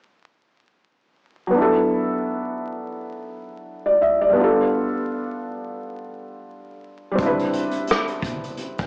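The recording has a homespun cassette quality, with vinyl crackle, a small-speaker sound and a wet spring reverb that hangs for about 2.3 seconds. This mellow, nostalgic lo-fi hip hop fragment, cut from a longer piece, moves with a gentle swing. A felt-muted upright piano enters at 1.5 seconds, soft and intimate up front, its thin felt giving short, hushed notes with audible action noise, further dulled by a low-pass filter and tape coloring. The piano's chords move from D69 to G7 and then to Cmaj9. At 7.2 seconds a vintage brush drum kit joins with hi-hat, rim click and a punchy kick, sounding acoustic and close in a small, pumping room with a rolled-off top and its own cassette grain.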